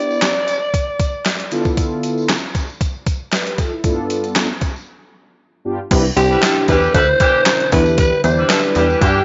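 A straight 4/4 groove at 116 BPM drives this funky, late-night fragment of early-eighties boogie funk, tuned to A4 = 438 Hz. It is built on a crisp, sampler-style 8-bit drum machine up front, with a thumpy kick, medium-tuned snare, hi-hat, handclaps and crash, all overdriven and treated with gated reverb, while a jingly acoustic tambourine sits in the background. Mellow synth brass, round and full-bodied with chorus and vibrato, carries the Em7, Dm69 and G9 chords, and a breathy, raspy alto saxophone states a short, smooth-topped phrase at the start before returning at 6.2 seconds, after a break from 4.9 to 5.9 seconds. The second section begins at 5.9 seconds with a punchy, wave-folded analog bass on Cmaj9 back to Em7, joined by a tight horn section with octave doubling playing a second line. A silky, very quiet string machine slips in at 6.5 seconds with slow-attack sustained chords, and the whole mix is dry, with nothing above 7.6 kHz.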